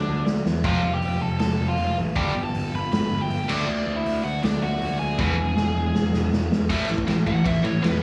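Punk rock with an upbeat, rowdy energy, this cut from a longer piece holds a half-time feel through its first 6.7 seconds, with drum fills at the start and again from 5.2 seconds, before the lead guitar breaks into a solo. A growly fuzz bass, a tight double-tracked distorted rhythm guitar and a raw garage kit with a punchy kick and rolled-off top sit up front, while a nasal, dark lead guitar with a parked wah carries the melody through slapback and tape echo. It sounds like a live gig heard through the venue's PA, with club ambience around the band.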